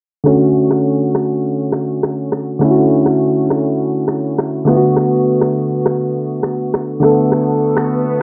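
Sultry and mellow, this short afrobeats cut at 102 BPM in 4/4 sets soft, round electric-piano-like synth keys with a warbling, vintage chorus up front over Dmaj7 and Bm7 chords, joined by produced electronic rim clicks and finger snaps, with a filter sweep running throughout and a cassette-tape haze in a moderate studio reverb before an electronic swell rises in the background at 7.9 seconds.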